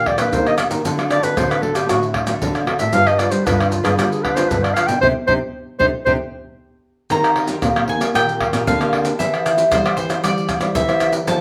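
Bittersweet and nostalgic, this short cut of samba and choro opens with a mellow, smooth-topped clarinet carrying the melody up front in a classical style until 6.1 seconds. Beneath it, a fingerpicked nylon-string guitar plays the accompaniment and a second, thumb-plucked, full-bodied nylon-string guitar plays the bass, while a tight surdo, pandeiro, tamborim and maracas keep a vintage, band-limited pulse near the front and join a band accent from 5.0 seconds. At 7.1 seconds a woody, picked mandolin with double strings takes over as soloist on the second line, all set in a moderate large-studio reverb.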